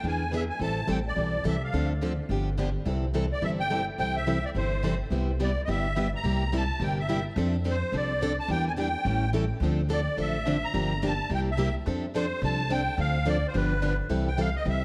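Jazz manouche in a playful, swinging mood, this short cut from a longer piece puts a reedy, shimmering musette accordion up front on the melody, its airy tone trailed by a diffuse ambient delay. Beneath it, a plugged-in steel-string acoustic guitar and a second steel-string acoustic guitar, set further back, pick out the accompaniment with audible finger squeak, and the background guitar stops at 13.9 seconds. A woody, thumpy upright bass with gut strings sits forward in the dreamy, reverb-soaked mix, as the chords move from a minor-seventh turnaround into a new section beginning at 5.1 seconds.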